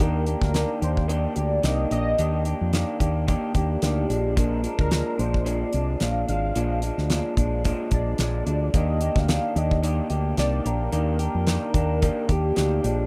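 A velvety synth lead carries the melody through this dreamy, laid-back indie and bedroom pop excerpt, its smooth, sustained tone colored by analog chorus, plate reverb and tape echo. Beneath it, an up-front electric guitar through a small old amp sounds dark, slightly broken-up and lo-fi under subtle chorus and a vibrato effect, while a round, punchy fingered bass and a dry, damped 70s kit with a fat snare and tight kick keep a gently swung groove. The recording has the light reverb and rough feel of a home demo.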